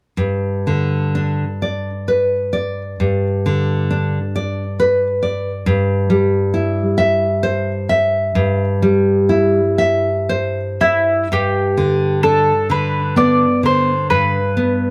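A fingerpicked nylon-string guitar opens this brief excerpt from a longer romantic duo, its fresh strings sounding bright and full-bodied as it sets down a serene, tender accompaniment in a lilting 12/8 with a freely breathing, rubato feel. Its part spans from deep bass notes up into a clear upper register, and the harmony settles on a G chord before shifting to C over a G bass at 5.7 seconds. At 10.8 seconds the mandolin enters up front with a picked melody in its middle range, its double strings giving a round, warm tone. The harmony returns to G as a new section begins, and both instruments carry on together to the close. Close, detailed microphones capture the intimacy of the playing, while light reverb adds a gentle sense of space.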